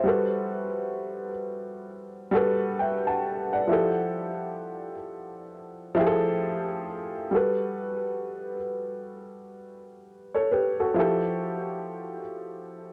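A worn, woody upright piano carries this short hip hop cut on its own, slightly detuned and sitting up front, its tone rounded off by a low-pass filter and trailed by analog delay. The mood is nostalgic and mellow, moving at a slow 66 BPM in 4/4 with a lazy swing on the sixteenth notes. Chords alternate between Gmaj9 and Fmaj9, the piano ranging from F3 up to A5 as the harmony shifts, and a new section arrives at 11.0 seconds on Fmaj9. A moderate small-room reverb gives the instrument a close, natural space. The recording itself is dry and gritty, with transformer saturation adding a hardware edge to this fragment of a longer piece, which runs to 12.9 seconds.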